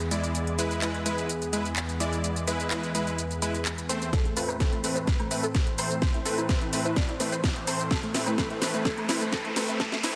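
Dreamy and bittersweet, this progressive house passage opens on an airy, breathy pad with chorus and a bright, detuned supersaw stab carrying tape echo over a kit of cracking snare, metallic hats, handclaps and shaker, each pumping under sidechain; at 4.1 seconds a punchy kick and a mellow, decaying unison pluck arpeggio join as a build-up with a drum fill and filter sweep unfolds, very quiet woodblock and cowbell follow at 4.5 seconds, and a background riser tops it from 6.7 seconds, all set in a lush hall reverb.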